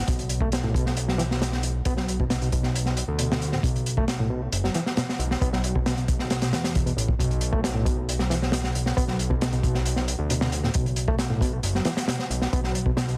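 This raw, funky breakbeat excerpt opens on a fat analog bass, joined almost at once by a crunchy breakbeat drum kit and a bright, reedy electric piano, all sitting in B minor at 135 BPM with a straight 4/4 feel. The drums sit up front with a punchy kick, a high-tuned snare and hi-hat, their small-room sound gritty and saturated with a dark, rolled-off top. Beneath them the bass holds a thick, detuned sawtooth and square-wave tone with a nasal edge and fast attack, sustaining low notes between F#1 and E2 in an evolving way. The electric piano carries the riff between A2 and B3, its reedy timbre shaken by fast tremolo and pushed through overdrive and delay. A single Bm chord underpins the whole 13.2-second passage, given light studio reverb and a dense, heavily limited modern master.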